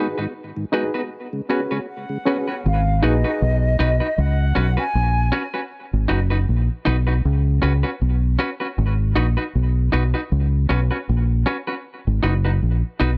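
Reggae with a hypnotic, spacious mood, cut from a longer piece and opening on a short break where a mellow tonewheel organ with key click and slow rotary speaker, a clean, compressed semi-hollow guitar and a barky, lightly overdriven reed electric piano with fast tremolo lay down the G#m7 to C#7sus4 vamp. An airy, distant concert flute with vibrato carries the tongued melody from 1.9 to 5.3 seconds, and at 2.7 seconds a deep, punchy dub bass enters up front alongside the guitar. Tape echo trails the organ, guitar, electric piano and flute, all set in a dry, close 1970s-style studio sound with digital ambience.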